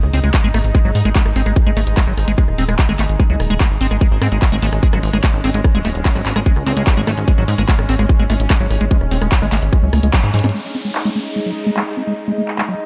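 Driving and psychedelic, this psychedelic trance excerpt moves at 147 BPM in a straight 4/4, its harmony resting on a G#5 chord. An up-front, tight electronic kick anchors the groove, joined by a layered drum and bass kit of bright hats, handclaps, rim clicks and crash cymbal, with low-pass filtering on its hats, snare, cymbals and room. A punchy, funky analog bass adds a plucky, wave-folded bite down low, while a squelchy, resonant acid bass riff carries chorus, digital delay and sidechain pumping. Higher up, a bubbling texture of random filter steps holds sustained chords, shimmering with chorus, built-in reverb and sidechain pumping, and a brief electronic zap flickers at 6.7 seconds. After a band accent and drum fill, the plucky bass stops at 10.5 seconds as the acid bass takes a filter sweep, a downlifter falls, and a warbling, nostalgic, lo-fi pad with phaser sits mellow in the background of an otherwise dry, close mix.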